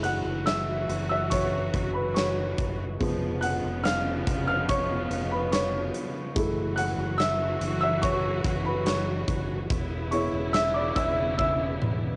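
A dark, woody upright piano carries this tender, emotional pop ballad over F#m7 and C#7/E# chords, joined by lush, distant bowed strings with vibrato, a round fingered electric bass, and a huge arena drum kit with a punchy kick that plays a fill at 11.4 seconds, with the piano, strings and drums sounding cassette-worn in a homespun spring-reverb space.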